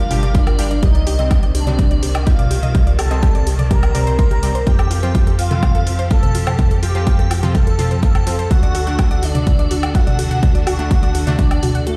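Melodic techno at 125 BPM in 4/4, cinematic and hypnotic, where a punchy, up-front electronic kick and a tape-warm house kit of hi-hat, toms and woodblock drive a tight, sidechain-pumped sawtooth sequencer bass beneath a smooth, resonant synth lead with vibrato and dub echo, an airy, dreamy second lead above it, a lush, distant symphonic string section holding sustained chords, a warbly, lo-fi pluck playing arpeggios and a brassy, wave-folded synth stab in the background, the harmony moving through Gm7, Cmadd9, Fadd9 and D, all played on a big sound system in a bare room with stone room reverb.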